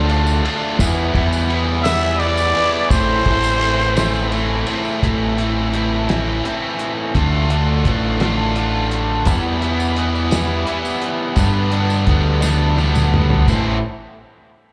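This excerpt sounds like a live gig heard through a club's PA, fairly dry with only a touch of room reverb, and it is cut from a longer piece of moody, restless indie rock in A minor. It sways in a slow 6/8 at 57 dotted-quarter beats per minute, moving through Dm, Em and Am before shifting to Dm, Em and G and landing back on Am. Up front, a raspy, brilliant trumpet carries a close-miked, pop-style solo melody with vibrato, growls and scooped notes, which ends at 4.7 seconds. Two bright, picked, overdriven electric guitars play riffs throughout: the crunchier one sits forward with slapback echo, and the other adds analog chorus, slapback and tape echo. A round, punchy fingered bass, overdriven and growling, anchors the low end beside a cloth-damped, thuddy drum kit in the background with a fat snare, tight kick and dark, rolled-off cymbals. A jingly tambourine sits behind the band and returns at 9.3 seconds, shortly before a drum fill at 12.4 seconds.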